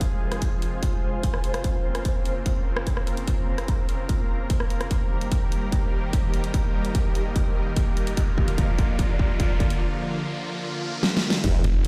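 This heavy wobble dubstep excerpt opens on a lush supersaw pad holding sustained chords through a low-pass filter and sidechain pumping, with an ethereal, warbling pad drifting above it through ensemble chorus and built-in reverb. The tempo sits at 147 BPM in a half-time 4/4 feel, with the harmony moving from F minor through B-flat minor add nine and E-flat to B-flat. A layered electronic drum kit with a huge snare, hi-hat, rim click and crash cymbal drives the build-up, under a distorted, tape-warm kick placed up front. Drum fills and a background riser push toward a brief break, and the airy pad drops out at 9.8 seconds as a swell gathers. At 11.4 seconds an impact lands and a formant-sweep wobble bass with chorus and overdrive bursts in, handing off almost at once to a snarling, growling distorted saw bass for a chaotic, aggressive finish. The sound carries little reverb.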